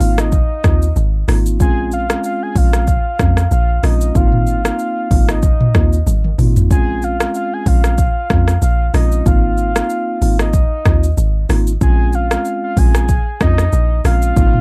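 Dark, dry production frames this mellow, smooth afrobeats excerpt at 94 BPM in Bb minor with a light 16th-note swing, where a deep, round log drum bass and a produced electronic kit of deep kick, crisp hi-hats, rim click, shaker and toms sit up front, with a drum fill at 6.1 seconds, beneath a clean tine electric piano and a soft octave-layered synth lead that carries the melody with chorus, delay and vibrato as the chords alternate between Ab6 and Bbm7.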